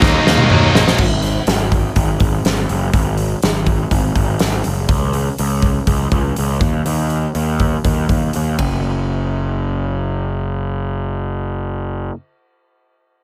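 Light reverb wraps this cut from a longer quiet-loud alternative rock piece, with every part placed up front. It opens on a drum fill from a large acoustic kit in a big room, its punchy kick, fat snare, toms, hi-hat, and crash and ride cymbals ringing bright, while a double-tracked, high-gain electric guitar plays a distorted picked riff that stops at 1.0 s. From there a fuzzed, overdriven picked electric bass carries the straight 4/4 groove with a growly edge alongside the kit. A second drum fill arrives just before the drums drop out at 8.7 s. The bass then plays alone until 12.1 s, leaving a restless, cathartic charge hanging in the air.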